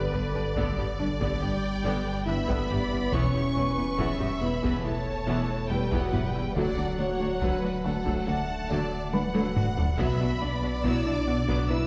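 A mellow French horn section holds sustained chords at the heart of this cinematic hybrid of orchestra and electronics, a relentless, vast passage cut from a longer film score at 70 BPM in 4/4. Above it, two lush bowed violin sections sing with vibrato, one carrying a smooth, distant melody from D5 to E6 and the other a soft-attacked, expressive second line, while a focused viola section fills in the middle and rich cellos and a distant double bass section sit in the background. A tight, detuned sequenced synth with a filter pluck and chorus drives quiet arpeggios throughout, and a deep sine-and-triangle sub bass with an octave anchors the low end. A felt-muted upright piano adds a very quiet, intimate texture where the action noise can be heard, and a close, dry taiko ensemble with heavy sticks enters at 0.6 seconds, with a drum fill from 9.1 to 10.0 seconds. The harmony moves from G through Em and D to Bm, and the orchestra sounds as if heard from further back on a reverberant scoring stage.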